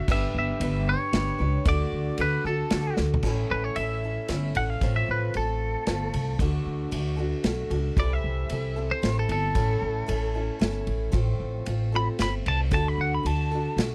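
Hopeful and jangly, this folk rock and heartland rock excerpt moves at 114 BPM in a straight 3/4 lilt, cut from a longer piece. A bright, twangy twelve-string electric guitar sits up front with a clean, compressed, picked tone, carrying the melody and turning into a solo from 3.2 seconds onward after a drum fill at 3.0 seconds. Beneath it, a picked acoustic archtop guitar gives a boxy accompaniment with audible finger squeak. An upright bass, played pizzicato on gut strings, adds a woody, thumpy low end that also sits forward. The unplugged drum kit, played with bundle sticks, pairs a punchy kick and medium-tuned snare with dark cymbals and toms. The chords move from G and D into a cycle through A, F/A, D and C6, all captured in a dry, close studio sound with a 1970s character.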